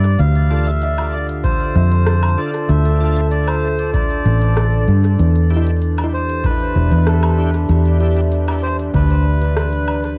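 Ambient dub with a spacious, hazy mood, heard here as a short fragment cut from a longer piece, moving from D minor to E minor seventh. A reedy, breathy melodica carries the melody through dub echo, floating over a warbling, nostalgic pad of sustained chords softened by chorus, reverb and a cassette-tape character. The fingered electric bass sits up front with a foam-muted, direct-and-amped tone, while a deep analog electronic kick enters at 1.4 seconds beneath a produced electronic kit of crisp hi-hat, rim click and woodblock, its echoes trailing off in dub fashion. Further back, a bright, lightly overdriven tonewheel organ adds stabs with key click and a slow rotary speaker from 0.5 seconds, and a woody, hollow-bodied kalimba plucks short thumb-picked arpeggios through tape echo. The whole track has a lo-fi home-cassette feel, dusted with vinyl crackle.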